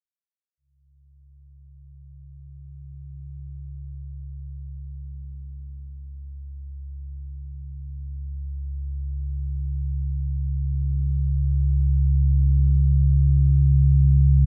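A cassette-tape recording with light room reverb carries this cavernous, unsettling ambient fragment in free time, tuned to A4 = 439 Hz. At 1.1 seconds a deep, rumbling drone sits up front, spanning C#2 to C#3 with a dark, detuned, wave-folded tone blending triangle and sawtooth. It has a slow attack and long release, carries built-in reverb and a subtle chorus, and sustains an ominous presence until 14.5 seconds.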